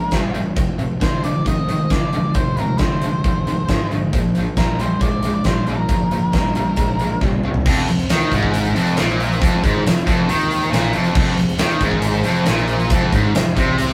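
Classic rock at 136 BPM in F dorian, driving and gritty, cut from a longer piece: a dark octave-fuzz lead guitar carries the melody until 7.2 s over two bright overdriven rhythm guitars riffing low, one up front and one in the background, while a fuzz-soaked picked bass anchors the low end and a very quiet, warbling vintage string machine of cellos holds sustained chords beneath. A huge arena drum kit with a fat snare, punchy kick and bright cymbals sits up front, and a drum fill at 7.2 s leads into the second section, where a double-tracked crunchy guitar joins very quietly at 7.7 s. The sound is a rough rehearsal-room recording with a wet booth ambience, moving through Bb and Fm7 before settling on Fm.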